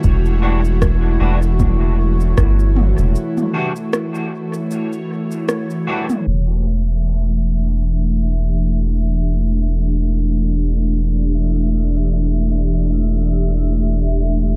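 A lightly swung 77 BPM 4/4 groove sets up this spacious, deep ambient dub excerpt in E dorian, moving from Emadd9 to Em7, where a soft overdriven electronic kick sits in the background until 2.5 s and an overdriven organic electronic kit of cabasa, rim click and filtered toms with dub echo plays until 6.2 s, while clean, scooped electric guitar stabs with ensemble chorus and dub echo flicker through the first half, a round, up-front sub bass and an airy, breathy, detuned pad hold throughout, and a bright bubbling stepped-filter texture glints faintly behind as a filter sweep moves over the pad from 6.3 s, all in a dark, dry mix.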